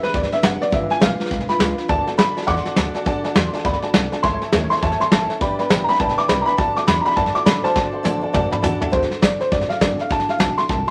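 Rollicking and upbeat, this short rockabilly cut has a light swing in 4/4. An up-front, boxy upright piano carries the melody and solos from the start until 8.9 seconds. A second upright piano, detuned, jangly and vintage-sounding, joins in support at 1.9 seconds and adds a brief fill near the end of that solo. Bright, full-bodied picked steel-string acoustic guitar, with audible finger squeak, fills out the accompaniment, while a dark, thumpy pizzicato upright bass on gut strings anchors the low end. A soft brush drum kit with a punchy kick sits close in a small room and plays a fill from 7.8 seconds, and moderate studio reverb and a layer of vinyl crackle surround the band.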